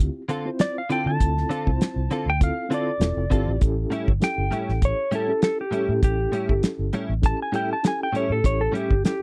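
Straight-eighth soul blues with a smoky, soulful mood, cut from a longer piece and moving at an easy medium pace. A clean lap steel guitar carries the melody from 0.6 seconds, its slide lines compressed and up front, shaped with volume swells and a slapback echo. Beneath it, a reedy, mellow electric piano holds the accompaniment with a fast tremolo, while a direct-recorded clean electric guitar adds picked stabs colored by analog chorus. A dark, round, foam-muted fingered bass gives a punchy low end, and a cloth-damped drum kit sits forward with a fat snare, a tight kick, hi-hat and a rolled-off top. The harmony moves from Dm7 to A7 at 3.6 seconds, and the whole take has the dry, close sound of a 1970s studio recording.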